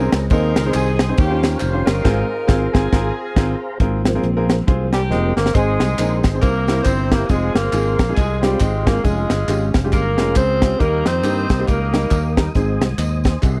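A swung, uptempo 4/4 gospel groove comes from a crisp fusion drum kit with a high-tuned snare and a growly fingered electric bass, both sitting up front in this reverent, uplifting excerpt. An edgy saxophone section carries the melody over clear grand piano and a lightly overdriven tonewheel organ with chorus vibrato and a slow rotary speaker in the background, while tambourine and handclaps add a live-room touch and a very quiet, lush string section appears briefly at 3.8 seconds. At 4.9 seconds a raspy, growling alto saxophone solo enters, all captured in a dry, close 1970s-style studio sound.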